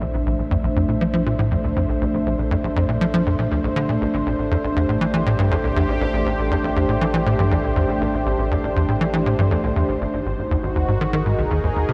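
Ambient, sequencer-driven space music in A phrygian sets a hypnotic, cosmic mood at 120 BPM in a straight 4/4, heard in this 11.9-second cut from a longer piece. A tight, punchy sequencer bass drives a saturated riff up front, its sawtooth, square and wave-folded tones shaped by a filter pluck and a moving notch, then colored by ensemble chorus and analog delay. Over it, a sweeping resonant pad holds sustained chords that evolve through a filter swell and slow attack, its detuned, full-bodied layers reinforced by a sub octave and treated with chorus. A round, warm sine sub bass sits deep in the background, holding the lowest register. The harmony moves from Bb to Am at 4.0 seconds and lands on G#7 at 10.0 seconds, all bathed in a huge ambient reverb with a long, spacious tail.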